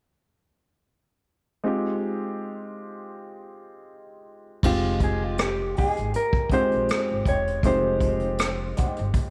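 A dark, clean, fingered electric guitar carries the melody of this introspective, smooth neo-soul and R&B excerpt, entering at 4.7 seconds and ranging from F4 to Db5. The music moves at 80 BPM in 4/4 in F minor with a light swing on the 16ths. It opens on an Fm9 chord, with a clear, natural grand piano playing accompaniment alone and up front from 1.6 seconds. At 4.6 seconds a woody, pizzicato upright bass joins a vintage brush drum kit, whose crash cymbal, hi-hat, tight kick and rim click sound roomy, with dark cymbals and a rolled-off top. A second electric guitar through a small old amp, slightly broken-up, compressed and picked, adds a wah-colored line in the background. Light studio reverb lends the whole passage a gentle sense of space.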